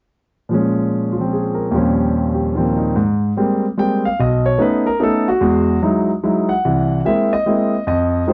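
Playful and relaxed, this short jazz waltz in Ab major swings its eighth notes at 147 BPM in 3/4, with a clear concert grand piano playing solo from 0.5 to 8.3 seconds, its natural tone sitting up front with a deep bass. The harmony moves from Bbm7 and Eb13 into a second section at 3.0 seconds, passing through Abmaj9, B9 and Emaj9 before landing on C7alt. The sound is dark, with light reverb, and the passage is cut from a longer piece.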